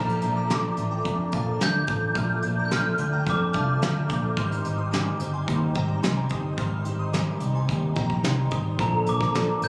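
A straight 4/4 pulse at 108 BPM comes from a soft brush drum kit with a fat snare and punchy kick, alongside a round, foam-muted picked bass sitting up front, in this hazy, sunny indie and bedroom pop excerpt in Bb major that moves between Bbmaj7 and Abmaj7. An electric guitar through a small old amp, slightly broken-up with a warbly pitch drift, carries the accompaniment, while a glockenspiel played with soft plastic mallets rings out a smooth, dark melody above a shimmering, detuned FM bell line in the background, both treated with tape echo. At 8.8 seconds a mellow tine electric piano slips in through its built-in speakers, and the mix has the feel of a phone recording in the room, with club reverb and compression.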